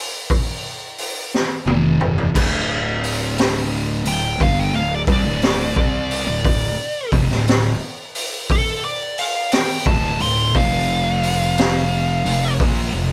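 A compressed, up-front fuzz lead guitar, treated with wah and distortion, carries a high solo melody from 4.1 seconds in this hypnotic, ominous stoner and doom metal excerpt. It moves at a slow 59 BPM in 4/4 with a swung eighth-note feel, in D minor. The raw garage drum kit sits up front with a high-tuned snare, a boomy kick and a gritty, saturated sound with a rolled-off top, and it plays a fill as the heavier parts enter at 1.7 seconds. Two dark, picked fuzz guitars grind out the low riff, one with added distortion sitting in the background and the other very quiet, alongside a round, overdriven picked bass. The riff moves over F5 and D5 power chords, and the whole band sounds as if it is playing live in one room with light reverb.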